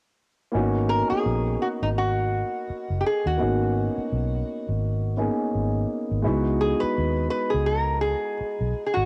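A metal-body resonator slide guitar carries the melody from 0.9 seconds, its metallic, nasal tone and fingerpicked slide phrases sitting up front with a cassette tape grain. This is a smooth, soulful neo-soul and R&B cut at 84 BPM in 4/4, with a 57% swing on the sixteenths giving it a relaxed lilt in G# minor. A concert grand piano supplies accompaniment from 0.5 seconds, intimate and natural with audible action noise, long sustain and its own cassette coloring. Beneath it, a vintage muted fingered electric bass plays dark, round, foam-muted lows up close. The harmony rests on G#m11 before moving to C#m11 at 6.2 seconds, all within a small room ambience and light reverb that give this home-recorded fragment of a longer piece a cozy, lived-in feel.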